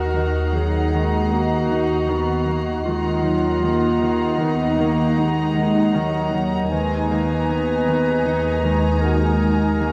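A hushed bed of bowed strings opens this uneasy, mysterious suspense cue at 78 BPM in an unsettled 5/4, set in Eb minor with a slightly raised tuning. A clear, floating violin section holds the melody on a high Bb, while a darker, vibrato-tinged violin section and a mellow classical clarinet weave second lines beneath it. A background viola section, a cello section and a double bass section, all bowed sul tasto with soft attacks, fill the middle and low end. An organ-like sine drone sits on a low Eb. A thumb-plucked Celtic harp rings through a riff in the background, and a felt-muted upright piano adds an intimate texture with audible action noise. A deep, moody ambient pad built from detuned sawtooth, ring-modulated and wave-folded tones enters with a slow attack at 0.1 s. A faint high violin texture hovers until 6.3 s. The harmony moves from Ebm to Abmadd9/Eb at 6.7 s. A moderate scoring-stage reverb and a layer of vinyl crackle give this fragment of a longer piece a worn, haunted air.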